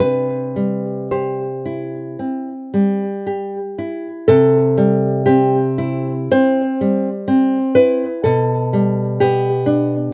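Dry and open-air, with little reverb and an outdoor feel, this romantic, lyrical excerpt in C major is a rubato duo of two fingerpicked classical nylon-string guitars in 4/4 at 54-67 BPM, tuned to A4 = 445 Hz: a dark-toned melody guitar sings softly in a narrow high range before stopping at 3.7 seconds, while the up-front, warm accompaniment guitar, touched with slapback echo and audible finger squeaks, carries on alone through a second section, moving from C to G/B at 8.2 seconds until it ends at 10.1 seconds.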